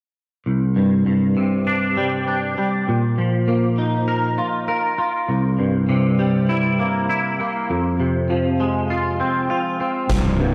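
A melancholic, cinematic post-rock fragment, cut from a longer piece, in a straight 4/4 feel. A clean, twangy electric guitar carries it almost entirely alone, playing fingered arpeggios from 0.5 seconds through a chord cycle of Csus2, Bbsus4, C7 and Fm, treated with ensemble chorus and analog delay. At 10.1 seconds a fuzz-drenched, round electric bass with overdrive arrives on a low C1, joined by a huge arena drum kit with a punchy kick and fat snare. Both of these enter just as the fragment closes at 10.5 seconds. The whole mix is dreamy and soaked in a wet plate reverb over a small room ambience, with the guitar, bass and drums each sitting up front.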